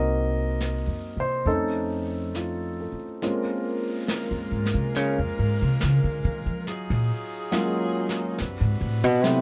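Pizzicato upright bass sits up front, thumpy and woody, and takes a solo from 3.2 seconds in this intimate, smoky jazz ballad in Bb minor, swung at a slow 69 BPM in 4/4. A polished upright piano with long sustain and audible action noise accompanies throughout. Brushed snare and hi-hat enter at 0.6 seconds, and a saxophone section with soft attack and vibrato joins at 3.2 seconds with sustained chords, all in light reverb that keeps the close, detailed sound.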